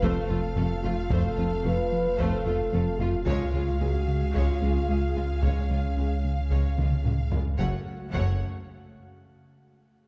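From the first moment, a brooding, vast hybrid orchestral and electronic film cue at 111 BPM in F# harmonic minor unfolds over F and C# chords: dark, distant French horns and an airy, breathy chorused pad hold sustained harmonies, while a lush violin section carries a soft-attack vibrato melody above a focused second violin line and close, rich violas. Underneath, clear cellos and very quiet double basses join a deep sine sub bass and a faint, evolving ring-modulated analog bass riff, as a very quiet, round pluck traces arpeggios. Distant taiko drums struck with hard sticks play a fill from 6.8 to 7.6 s, where the harmony turns to F# minor in a warm, dark scoring-stage space.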